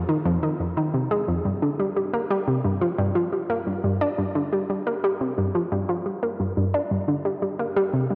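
Cosmic and hypnotic, this short ambient fragment cut from a longer piece moves at 88 BPM in a straight 4/4 in F dorian. A single analog pluck plays alone for the full 8.2 seconds, spanning F2 to D4 with a round, nasal, detuned tone, a fast attack and short decay, sitting up front with chorus and analog delay. A wet plate reverb opens the space around it, while the worn cassette tape sound adds a warbly pitch drift.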